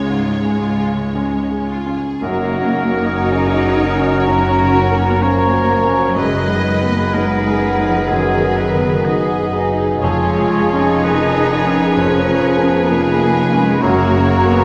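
A clear, up-front concert grand piano opens this lyrical, passionate classical passage in F# major at a rubato 62 BPM, carrying the melody over a lush bed of bowed strings: a rich violin section in the background, a second violin section with a smooth top, intense violas and expressive cellos. At 2.2 seconds the double basses enter with the woodwinds, a bright oboe, an airy, distant flute, a very quiet clarinet and a mellow bassoon in the background, adding lines and support as the harmony moves toward a return to F# at 13.8 seconds. The whole ensemble sits in a wet scoring-stage reverb, heard from further back in the room, in this passage cut from a longer piece.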